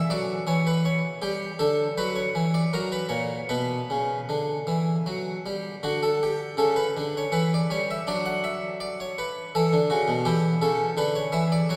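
A solo harpsichord opens the recording, a plucked Flemish-style instrument with a brilliant, octave-strung tone that sits up front. The music is a baroque-style suite movement in triple time, dance-like and radiant, played with a flexible rubato feel. The harmony moves through rich colours such as Dmaj13, F#, Bm and later Gmaj9#11, Em7 and C#m7b5, while the harpsichord ranges from A#2 up to F#5. The opening phrase returns at 5.9 seconds, so the passage is built from two statements of the same section. The sound carries a long, wet cathedral reverb and is heard from farther back in the room, and the clip is cut from a longer piece.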